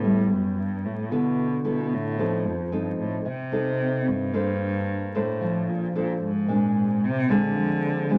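Bossa nova at 112 BPM in a straight 4/4, this brief excerpt feels sophisticated and relaxed, moving through G69, F7, Bbmaj9 and Bb9 chords. A single bowed cello carries the low melody with a soft attack, expressive vibrato and gliding portamento, while a fingerpicked classical nylon-string guitar supplies the accompaniment, both warm in tone and sitting up front for the full 8.2 seconds. A moderate club reverb and a vinyl crackle lend the sound an intimate, late-night glow.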